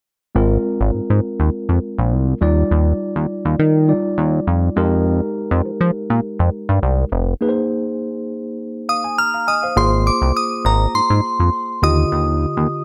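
Funk at 102 BPM with a danceable, feel-good mood, cut from a longer piece, where a retro, nasal chorused synth bass with a plucky filter sits up front beneath a worn, slightly out-of-tune tine electric piano moving through lush chords like Ab69, Ebmaj9 and Fm11, the piano adding a fill at 8.6 seconds before a crystalline FM synth bell enters at 8.9 seconds with a high, decaying chorused melody, all set in light reverb.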